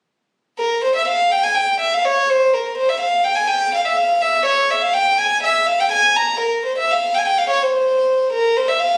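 A straight 2/4 pulse at 124 BPM drives this short, soulful and festive klezmer passage in C phrygian dominant, cut from a longer piece. A lone bowed violin, pure and floating with a soft attack and an airy bow, plays solo from 0.6 to 9.0 seconds, ranging from Bb4 to Bb5. It sits up front in a moderate studio reverb, captured on a phone in the room.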